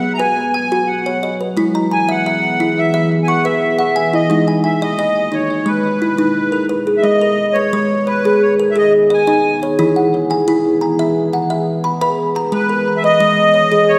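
A wet, spacious reverb, like a large scoring stage, surrounds this short meditative world piece, which is cut from a longer work and has a hypnotic, steady pulse in four. Up front, a kalimba plays plucked arpeggios with a woody, hollow-box tone and a bright thumbnail attack, its short notes trailed by tape echo. Beside it, an accordion carries the melody with a reedy, sweet yet dark voice, its light tremolo tuning adding a gentle shimmer to its smooth line. Beneath both, a deep, moody ambient pad holds sustained chords with a slow attack and long release, its detuned, wave-folded tone thickened by a sub octave, chorus and its own reverb. All three parts play throughout, moving through two halves of about 7 seconds each as the harmony shifts from B and E through D#m to G#m, then returns through E to G#m at 12.5 seconds.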